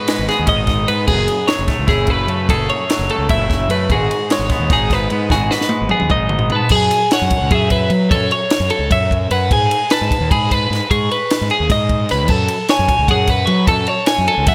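Bright and playful, this math rock and midwest emo excerpt races at 300 BPM in 7/8 over G#m7 and F#m11 chords, with a clean, compressed twelve-string electric guitar playing up-front arpeggios beside a scooped, twangy electric guitar with slapback echo that accompanies until 6.7 s, a dry compact cocktail drum kit with a high-tuned snare, punchy kick and dark cymbals that plays a fill from 5.3 s, a round fuzz-overdriven fingered bass up front, and a crunchy, dark overdriven guitar that takes the melody from 6.6 s with spring reverb and slapback echo, all set in a small room with light reverb.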